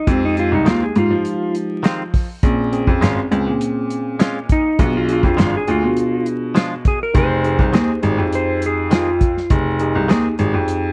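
Straight-eighth soul blues with a soulful, smoky mood, this short excerpt moves through an F minor progression over about 11 seconds, with a dark, clean lap steel carrying the slide melody up front until 9.5 s. A tine electric piano comps through its built-in speakers, a brilliant baby grand piano holds down the bass, and an acoustic soul drum kit with a punchy kick and medium-tuned snare sits close with a rolled-off top. A twangy, scooped electric guitar, recorded direct and compressed, adds picked stabs bathed in spring reverb from 0.7 s, all captured in a dry, close 1970s-style studio sound with vinyl crackle.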